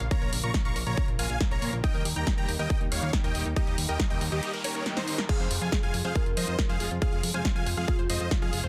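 Bittersweet and driving, this uplifting trance passage, cut from a longer piece, moves in a straight 4/4 pulse under a dense, heavily limited modern master with digital ambience. An up-front, layered electronic kick anchors the groove alongside a punchy analog drum machine whose tape-warm snare, hi-hat and crash cymbal carry sidechain pumping on the hats and cymbals. A fat, saturated analog bass with tube saturation pumps beneath a huge, compressed supersaw melody that spans Eb4 to Db6 with vibrato and digital delay. In the background, a muted string section holds dark, veiled con sordino chords, and a bright, detuned analog pluck runs arpeggios through chorus and delay, both carrying sidechain pumping. Around 3.9 seconds a noise sweep leads into a brief break and drum fill, and at 5.3 seconds a velvety synth lead enters as a second line as the harmony settles from Bbm and Eb onto Fm.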